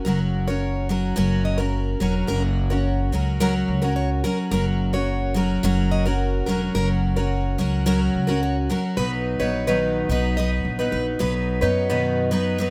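Acoustic pop with an easy-going, heartfelt mood, built on a shimmering, octave-doubled twelve-string guitar up front, a boxy plugged-in steel-string guitar picking high arpeggios with audible finger squeak, and a woody, thumpy upright bass on gut strings, all captured close and dry with little reverb, moving from F# to B at 9.0 seconds in this short cut from a longer piece.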